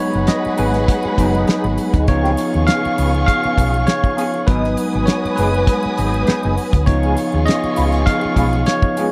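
A bell-like tine electric piano leads this lush, 1970s-style soul excerpt from the very start, taking the lead as a bright, clean solo that sits up front across the whole passage, while a dark studio violin section carries a smooth, expressive second line with vibrato and portamento. Beneath them, a symphonic string section holds warm sustained chords in the background, and a mellow electric guitar enters at 0.1 seconds with a dark, fingered riff colored by wah and tremolo. A distant, shimmering triangle sparkles faintly from a large room, and a hollow-body short-scale bass arrives at 0.2 seconds with a round, amped tone, staying up front until 8.6 seconds. The damped 70s drum kit joins at 0.3 seconds, its fat snare, tight kick and hi-hat dry and forward over a gently swung groove in four. The harmony moves between G#m7 and C#7 in a dry, close small-room studio sound, giving the piece a bittersweet, cinematic mood.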